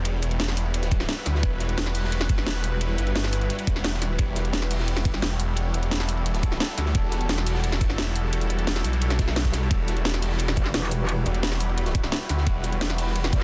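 Tense and mechanical, this dark technical drum and bass excerpt at 174 BPM in E minor pairs a snarling, detuned saw bass and a swarming, warbling drone with phaser on its sustained chords, an up-front cracking drum and bass kit, a knocking electronic kick arriving at 0.9 seconds, a gritty breakbeat kit with rolled-off top tucked in the background, and a metallic, chorused wobble bass that cuts in at 10.6 seconds, all sitting in a small room under a dense, heavily limited master.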